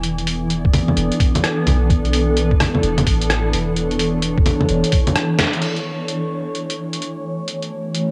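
A blurred, granular cloud pad sits up front, holding sustained E7sus4 chords with its built-in reverb, sidechain pumping and cassette tape haze before settling on F#m7, in this ghostly, rainy future garage excerpt at 129 BPM in F# minor with a 16th-note swing. Beneath it, a round, deep 808-style bass pumps until 4.8 s, while a muffled, pitched-down lo-fi sampler kit of bongos, crash, hi-hat, rim click and a fat snare plays throughout, joined at 0.6 s by a thumpy, tape-toned electronic kick. A drum fill and band accent land at 5.4 s, all set in a moderate spring reverb with the intimate character of a home cassette recording.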